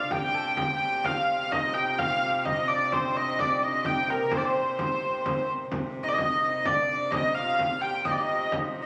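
A dark, nasal hurdy-gurdy carries the melody up front from the first moment of this ancient, mysterious medieval dance in C dorian at 128 BPM in 3/4, over a rich, gut-string viola da gamba drone on C3, with a shimmering hammered dulcimer treated with tape echo and a very quiet, chiffy tenor recorder as second lines, and a band-limited, vintage frame drum entering at 0.1 s, all captured on a phone in the room with club reverb and compression as the music moves into a new section at 5.7 s in this short cut from a longer piece.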